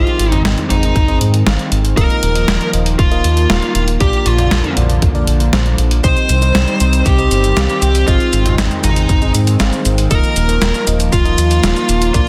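Synthwave in a nostalgic, dreamy mood, cut from a longer piece, where a dark, overdriven lead guitar with tape echo carries the melody over a soft, airy second lead with vibrato, a mellow analog pad pumping under sidechain, lush FM electric piano stabs in the background, a round, deep analog bass up front, a detuned 8-bit drum machine of hi-hat, shaker, snare and toms, and a punchy electronic kick that joins at 1.0 seconds, all set in light reverb with a dense, heavily limited master.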